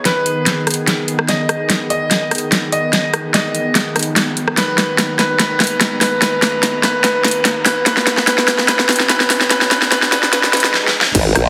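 A detuned, morphing wavetable pad opens this aggressive, chaotic heavy wobble dubstep excerpt, holding sustained G# minor chords with chorus, built-in reverb and sidechain pumping at 146 BPM in a half-time 4/4 feel. Almost at once a bright concert grand piano carries a short melody through a delay, while an overdriven big-room dance kit sits up front with a huge snare, metallic hats, crash cymbal and rim click, playing drum fills across the whole build-up. A very quiet electronic riser and swell enter beneath it from 2.4 s, gathering toward the drop. At 11.1 s an impact lands with a punchy, overdriven electronic kick and a formant-sweep wobble bass whose sawtooth-and-sine tone is compressed, chorused and pushed forward. The mix has a heavily compressed, radio-like sheen and sits in a wet digital room reverb.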